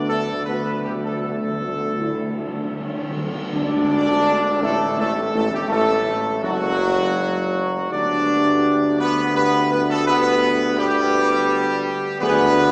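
Classical ceremonial fanfare in a stately triple metre, triumphant and majestic in mood, cut from a longer piece. A bright trumpet section carries the melody up front, while a dark, lightly vibrato French horn section sits distant and roomy in the background and a mellow, soft-attack trombone section holds sustained chords beneath. A mellow tuba with a smooth top anchors the bass line. Timpani struck with hard mallets open with a fill before the band lands an accent at 3.5 seconds, where a very quiet, dark tam-tam joins until 6.4 seconds; the timpani return briefly at the close. The harmony moves from Bm7/D to D and then G/D, and the whole ensemble is heard from further back in a wet church space with a long reverb tail and a small-speaker character.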